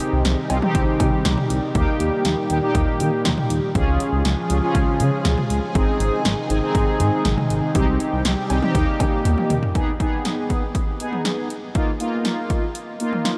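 A punchy, overdriven analog drum machine sits up front with cowbell, hi-hat, kick, snare and toms in this nostalgic, wistful 120 BPM synth-pop fragment, joined by a dark, gliding sawtooth bass, a round, brassy synth line with chorus and vibrato, and a lush, detuned unison pad with chorus and phaser that drops out at 9.7 s, during a drum fill that starts at 9.3 s and just before the shift to an Ab minor chord at 9.8 s, all bathed in a dreamy reverb with an 8.6-second tail.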